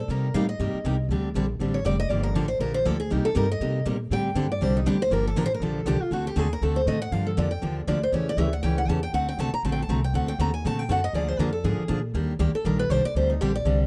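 Acoustic string swing in the jazz manouche style, this fiery, swinging fragment races along at 239 BPM in 4/4 with a light swing on the eighths, built over minor-key changes such as Cm7, D7b9 and Gm7. A boxy, parlour-toned picked steel-string guitar carries the melody as a solo across the full 13.9 seconds, while a second, bright and full-bodied jumbo steel-string guitar picks out the accompaniment and a woody, thumpy upright bass on gut strings anchors the low end with pizzicato. All three sit up front in a dry, close recording with a 1970s studio character.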